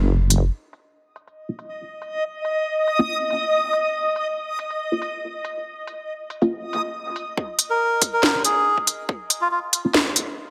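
This excerpt from a longer deep dubstep piece opens with a deep, chorused wobble bass that lasts only until 0.5 seconds, its detuned sawtooth and sine tone dark and compressed. A garage drum kit takes over with a cracking snare and crisp hats, both low-pass filtered and tape-warm, with a roomy character. Muted, full-bodied dub chord stabs with a filter pluck are shaped by phaser, subtle chorus, dub echo and a filter sweep, while a reversed, granular backwards texture adds a bright, dreamy glow in its own reverb. At 140 BPM in Bb minor with a swung half-time feel, the mood is meditative and dark, and a moderate lush hall reverb surrounds the mix. At 7.4 seconds a build-up begins on a Bb minor chord as a high-passed electronic kick arrives, and at 7.7 seconds a reedy, breathy melodica with a nasal edge carries the melody through dub echo.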